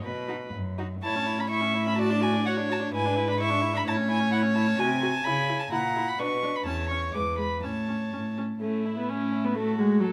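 Lively and cheerful, this brief passage from a quick classical-period movement for string quartet has a flexible rubato feel in 2/4. A nasal, smooth-topped first violin carries the melody while a second violin with light vibrato plays a second line, a reedy viola supplies accompaniment and an up-front cello anchors the bass, each bowed by a single player with a gut-string, period-style tone. The cello and melody violin begin together, the other two join at 0.3 s, and a moderate large-studio reverb surrounds the ensemble throughout, while the harmony settles onto A at 7.6 s.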